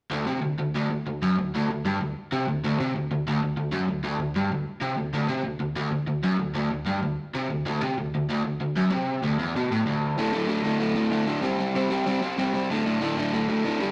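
A straight 4/4 pulse at 191 BPM drives this upbeat, rowdy punk cut in D mixolydian, where a lone bright, overdriven electric guitar, picked, double-tracked, compressed and up front, ranges from D2 to C4 and moves at 10.2 seconds into D5, C5 and back to D5 chords, set in a wet stone-room reverb with the rough, warm saturation of a rehearsal-room recording.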